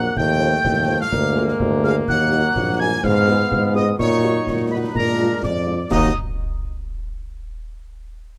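This short cut from a longer military-style march for wind band opens with trumpets, trombones, tuba and a piccolo together, set in Eb minor at 125 BPM in a straight 2/4 with a stern, martial mood. The trumpet section carries the melody with a mellow tone and light vibrato, while a pure-toned piccolo with a soft attack and expressive vibrato sings a second line high above it. Beneath them the trombone section holds clear, present sustained chords, and a warm tuba sits up front on the bass. Clash cymbals, concert bass drum and concert snare drum join at 0.2 seconds, close and dry with dark cymbals, and a close-miked French horn section slips in at 0.4 seconds as background accompaniment. The harmony moves from F7/Eb through Bb7/D, Ebm, Fdim/Ab and Ebm/Bb before Bb7 settles back onto Ebm near 5.9 seconds, all captured in a dark production with little reverb.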